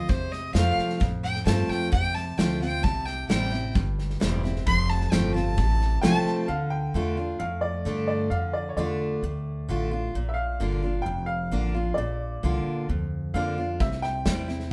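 A straight 4/4 shuffle-free pulse at 131 BPM carries this easygoing, down-home honky-tonk and classic country cut in F major, with a punchy-kicked, medium-tuned country drum kit, a woody pizzicato upright bass and an up-front, full-bodied picked jumbo acoustic guitar, the band playing live in one room with a wet studio reverb. A clear, earthy bowed fiddle with light vibrato takes the opening solo. A brilliant, smooth vintage upright piano enters at 6.0 seconds and takes over the lead at 6.5, while the drums drop out and return at 13.8 seconds as the chords move from D minor through B-flat to C.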